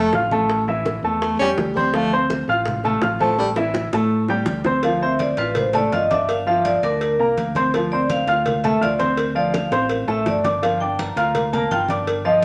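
A straight four-four Afro-Cuban jazz groove, driving and fiery, pairs tight, high-tuned bongos and cowbell with damped, low-tuned congas beneath a clear, intimate baby grand piano with audible action noise and a warm fingered electric bass, while a breathy, subtone baritone saxophone solos up front until 3.5 s and a metallic, ringing vibraphone with slow motor vibrato takes the melody from 5.0 s, set in a wet studio reverb.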